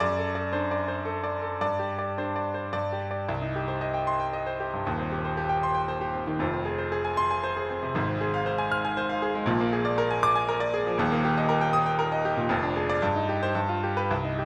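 Agitated and stormy, this short passage from a longer classical piece is a virtuoso piano study in C minor, moving in 3/4 at 106-120 BPM with a flexible, rubato feel. A solo grand piano carries everything from 0.0 to 14.4 seconds, ranging from Eb1 up to F6, and its tone is bright and brilliant. The instrument sits present and up front, with an intimate closeness that lets the audible action noise come through. A wet recital hall reverb surrounds it, giving the sound a lingering tail. The opening harmonies hover around D7/F#, Gsus4 and G5 before the music settles onto C minor at 3.3 seconds, then travels through Fm, Bb7 and Eb before closing on a G7 at 13.6 seconds.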